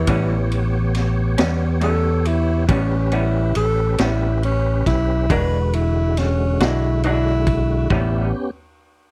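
A dark, breathy tenor saxophone takes an intimate, jazz-style solo in subtone through 7.9 seconds, scooping into notes with soft attacks and vibrato, in this laid-back, soulful slow blues in 12/8, cut from a longer piece. Beneath it, a full tonewheel organ holds sustained chords through a slow rotary speaker and chorus vibrato with audible key click, while a round fingered electric bass sits up front and a slightly broken-up, lo-fi electric guitar through a small old amp adds tremolo-soaked accompaniment. A gritty garage drum kit with boomy kick, high-tuned snare, ride cymbal and toms rounds out the dry, close 1970s-style studio sound, as the harmony moves from A9 to E9 and back to A9.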